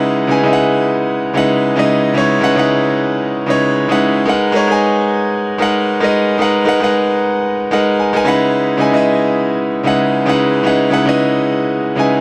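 Amapiano at 113 BPM with a swung sixteenth feel, this hypnotic, deep fragment of a longer piece features a solo grand piano, brilliant and open with long sustain and placed up front in light reverb, moving through C#m11, G#m9 and back to C#m11, with a fill from 7.5 to 8.5 seconds.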